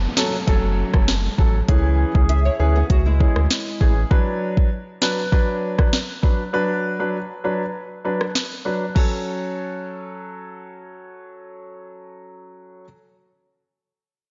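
Sultry and tough, this dancehall excerpt moves at a straight, steady pace with a clear grand piano carrying the accompaniment from 0.2 s to 12.8 s, its intimate tone showing audible action noise, long sustain and a subtle chorus, with sidechain pumping tying it to the beat. An electronic afro-pop drum kit sits up front with a deep kick, sharp snare, hi-hat, rim click and crash cymbal, playing from 0.2 s until 9.1 s, with a brief break from 7.7 s to 9.0 s. Underneath the opening, a round, sine-like sub bass holds sustained low notes with a fast attack until about 4.0 s, while a downlifter sweeps in the background over the same stretch. A small fingerpicked nylon-string guitar adds brief arpeggios coated in analog chorus and tape echo. The chords move from F#m through C#m and Bm before returning to F#m, and the mix has a light studio reverb and a soft, rolled-off top end.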